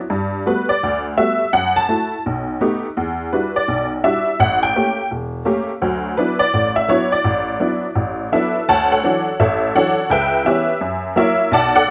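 Relaxed and easygoing, this short solo jazz passage swings along at 168 BPM in 4/4, cut from a longer piece and set in D major. A lone honky-tonk upright piano carries everything from 0.1 to 11.9 seconds, ranging from a deep E1 up to A5, its tone detuned, jangly and vintage with a bright, natural edge. The harmony moves through rich jazz colours, opening on Gmaj9 and passing through F#m7, B7b13, Em9 and A7b9 before settling on D69. A second section begins at 8.7 seconds on Dmaj9, turning through C#m7b5 toward F#7 as the passage breaks off. Close, detailed miking with little reverb keeps the piano up front and intimate.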